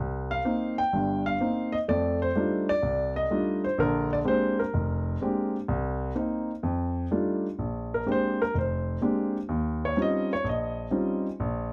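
Solo jazz for grand piano, swinging at a relaxed medium pace with a warm mood, taken from a longer piece. The piano sits up front in an intimate, natural sound, its action noise audible through close, detailed microphones and a light touch of reverb, ranging from deep bass notes to the upper middle of the keyboard. Its harmony moves through rich extended chords, and from 7.6 seconds a new section opens that settles on colourful thirteenth chords.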